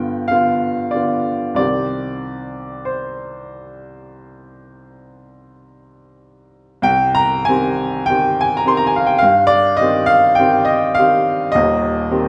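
Classical romantic nocturne in C minor for solo upright piano, yearning and melancholic at a slow, rubato 44-55 BPM, its woody, natural tone sitting up front across a span from Eb1 to C6 in a moderate recital-hall reverb of a church or concert hall, opening on G7 before settling into C minor, shifting to a new passage at 6.9 s and moving to Cm/Eb at 11.6 s in this short excerpt cut from a longer piece.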